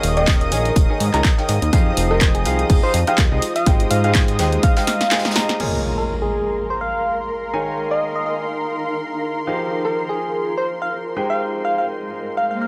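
Piano house at 124 BPM in Ab major, this feel-good, euphoric passage, cut from a longer piece, swings lightly on a 4/4 pulse, tuned a little flat of standard pitch. A clear concert grand piano with deep low notes plays the riff over chords moving from Eb7sus4 through Fm9 and Abmaj7 to Bbm7, while a silky, bright analog string pad with ensemble chorus and vibrato holds sustained chords, and a cloudy, blurred granular pad drifts mellow in the background through its own reverb. A round, gentle, keys-like FM synth lead carries the melody, coloured by chorus and a cassette-tape sheen. Up front, a fat, detuned sawtooth bass and a layered, punchy electronic kick drive the groove alongside a tape-warm analog drum machine with crash, handclaps, hi-hat and snare, plus a very quiet brushed kit with a rolled-off top. After a drum fill, the rhythm section falls away by 5.7 seconds as an electronic impact hits at 5.6 seconds. 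The string pad then carries a filter sweep to the end, where a swell arrives at 12.6 seconds, all set in light reverb and studio ambience, with sidechain pumping on the pads, piano and bass.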